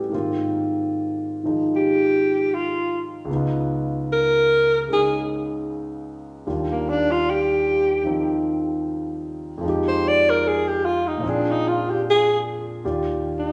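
Tender and intimate, this excerpt is a slow jazz ballad in Eb major at 76 BPM with a gentle swing. A warm concert grand piano sets the harmony from the start, with deep bass, long sustain and audible action noise. From 1.8 s, a breathy alto saxophone carries the solo melody up front with vibrato, subtone and scooped notes, over chords that move through Ebmaj9, Fm7 and Bb7 in a large, reverberant studio where the band plays live in one room.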